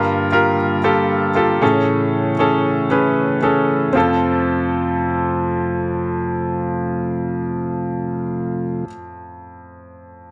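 Pop at 116 BPM in a straight 4/4, this uplifting, warm excerpt moves from Gm7 to Amaj7 and settles on F at 3.9 seconds, tuned slightly high to A4 = 441 Hz. An intimate, up-front grand piano carries the accompaniment with a clear, natural tone and audible action noise, while a soft, flute-like tonewheel organ with a touch of key click holds sustained chords through a slow rotary speaker until it drops out at 8.9 seconds. Light reverb and a digital ambience frame the pair, and the piano rings on until 10.3 seconds.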